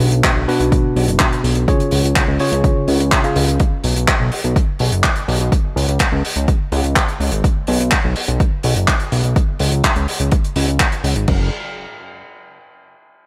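A danceable, bittersweet italo disco groove at 125 BPM in straight 4/4 opens with a worn, slightly out-of-tune tine electric piano playing stabs through a combo amp with tape echo, over a fat analog bass and a damped 70s drum kit. The piano stabs drop out at 3.6 seconds, leaving the thick, detuned sawtooth bass, saturated and up front with its own tape echo, to carry the Bm and C# harmony that later settles into B5 and C#5 power chords. The drum kit sounds dry and dark with a rolled-off top, its crash cymbal, handclaps and hi-hat sitting close. Alongside them, a punchy, overdriven electronic kick drum pushes forward as the loudest part. Light reverb and a small room ambience frame the mix, and at 11.3 seconds the chords fall away into a brief closing section as this cut from a longer piece ends.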